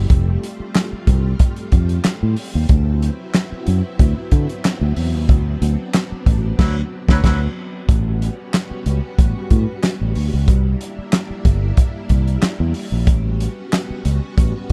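The warm soul drum kit anchors this playful funk excerpt at 92 BPM, its fat snare, tight kick and dark cymbals sitting up front in a tight, pumping room, with handclaps, hi-hat and crash filling out the groove. A punchy fingered electric bass, played direct and amped, sits just as far forward, ranging between F1 and D3. Behind them a string machine spreads lush, sawtooth sustained chords with a slow attack, long release and ensemble chorus, giving the dark, dry production a bright vintage sheen. A horn section, distant and roomy with light vibrato, adds a short second line from 6.6 to 7.4 seconds during a band accent that runs from 5.3 to 7.9 seconds. The harmony moves through F and D13 before shifting at 7.9 seconds to A13 and C9, then returns to A13.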